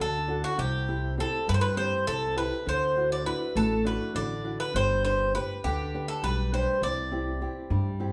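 A lush, reverberant studio room frames this short fragment of Greek folk music, with a small band playing live together and sounding sunny and warm. The Greek bouzouki carries the melody up front, its bright, metallic double strings picked with some octave-doubled strings adding shimmer. A nylon-string guitar fingerpicks a small, warm accompaniment beneath it, while an upright bass played pizzicato on gut strings gives a woody, thumpy low end. All three parts play together from 0.0 to 8.1 seconds in a straight 7/8 feel. The harmony moves from D to C, then Dadd9, G and back to C.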